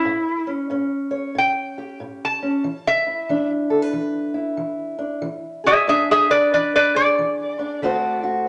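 A lap resonator guitar, played with a steel bar and fingerpicks in a metallic, nasal voice, carries the melody up front from the first second alongside a dark, woody, boxy old ladder-braced acoustic guitar fingerpicked on old strings, giving this rollicking, soulful swung country blues excerpt its A7, E7 and D7 changes in a wet studio reverb before it is cut off at 8.5 seconds.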